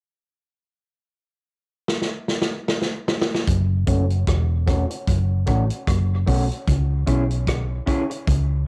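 A loping, swung 4/4 groove opens with a vintage drum kit's fill at 1.9 seconds, its punchy kick, medium-tuned snare, rim click and hi-hat sounding natural and up front in a small room, before a dark, round hollow-body bass joins at 3.5 seconds over F# minor, moving to C# minor, and a bright, twangy, slightly broken-up electric guitar slips in at 3.9 seconds through dub echo, plate reverb and a filter sweep, giving this spacious, hypnotic dub reggae excerpt a lo-fi cassette haze.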